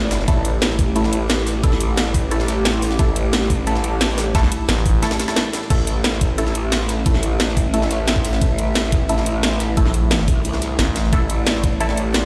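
A dark analog pad of detuned, ring-modulated chords pumps under a saturated, formant-filtered growl bass from the first second, as this cut from a longer dark technical drum and bass piece drives at 177 BPM in a tense, aggressive mood. A knocking electronic kick, a drum kit with a cracking snare and metallic hats, and a gritty, pitched-up jungle break tucked in the background carry the rhythm, while a muted, phased dub chord stab with digital delay sits behind, all sharing a tape-warm, small-room character. A thick FM bass pushes up front at 4.3 and 9.8 seconds, with a short break at 5.0 seconds before the drop returns, and the whole mix carries a large studio reverb, the boom of a big sound system in a bare room, and lossy compression artefacts.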